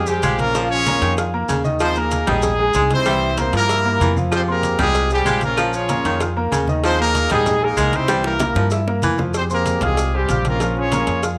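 A brilliant horn section sits up front with the melody, its soft-attack, octave-doubled ensemble lines carrying this driving, passionate salsa excerpt in F minor at 191 BPM. Beneath it, a punchy baritone saxophone with vibrato and a smooth top plays a second line until about 9.2 seconds, while a woody, present upright piano with long sustain fills in the accompaniment. The pizzicato upright bass adds a warm, woody, steel-strung bottom, and the harmony cycles through Fmadd9, Bbm7, Ebsus4 and C7. In the background, low-tuned congas sound bright yet compressed and saturated, hard-handed cowbell and high-tuned bongos stay tight and dry, and grainy, mellow maracas shimmer faintly. A drum fill from 8.1 to 9.3 seconds leads back into the opening phrase, all set in a small room with a moderate echo-chamber reverb.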